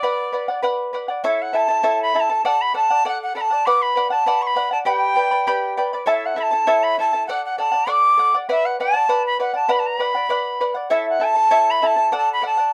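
A reedy, airy quena carries the melody from the first second, its cane tone straight and soft in attack as it ranges from D5 to D6 and sits up front in the sound. Beneath it, a fingerpicked charango fills in the accompaniment, its double strings giving a shimmering, bright sparkle, with some strings doubled at the octave. This is Andean folk at 99 BPM in a straight 2/4, and the mood balances melancholy with a festive lift. The harmony moves through Bm, A, D and G, turning back toward Bm before closing on A and then D at 12.1 seconds. Close, detailed microphones and a light reverb keep both instruments clear in this 12.7-second passage cut from a longer piece.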